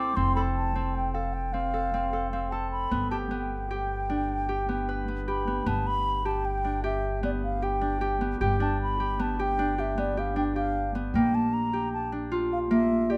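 This is contemporary instrumental chamber music in an uneven 7/4 meter with a straight feel, carrying a restless yet hopeful mood across this short fragment of a longer piece. A mellow wooden baroque flute carries the melody in a pure, high register, its tongued notes colored by gentle vibrato. Beneath it, a Celtic harp sits up front with fingerpicked arpeggios that ring out warmly, while a pizzicato upright bass strung with steel adds a woody low line, also placed close in the mix. All three instruments play together from the opening through to 13.2 seconds, moving through F and G harmonies before shifting to Bb at 11.1 seconds. The close, detailed miking captures each instrument clearly, with a light reverb giving the ensemble a touch of air.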